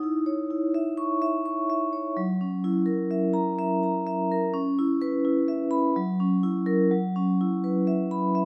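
A solo vibraphone, struck with medium hard mallets and placed up front with a metallic, ringing tone and slow motor vibrato, moves through chords from C#madd9/D# and F#7 to C#m7 and F#7sus4 across F#3 to C#6 in this hypnotic, reflective 8.4-second fragment of a contemporary classical piece, played rubato at 126 BPM in 5/4 with A4 tuned to 441 Hz and set in light reverb.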